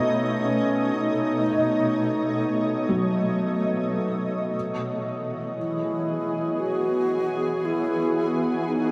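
Ambient in free time, serene and warm, this excerpt from a longer piece sets an airy, hollow alto flute melody with vibrato and delay over an up-front shimmering pad of sustained chords, soft felt-muted upright piano arpeggios with audible action noise, and a very quiet nasal analog drone, shifting from B9 to Eadd9 at 4.5 seconds before a faint glassy harmonics texture with drifting overtones enters at 5.1 seconds, the dreamy mix soaked in huge reverb.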